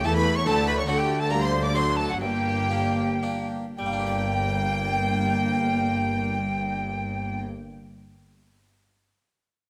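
A baroque-style classical concerto movement in G minor and 3/4, stormy and driving at 104-145 BPM, in which an airy, bright alto recorder carries the melody alongside an expressive, vibrato-rich violin section, while a focused second violin line sits in the background, a plucked harpsichord and smooth, distant violas fill out the accompaniment, and a warm cello section pairs with lush, soft-attacked double basses on the bass, with the tempo slowing from 0.3 to 3.8 seconds and the whole captured with light reverb and close, detailed microphones.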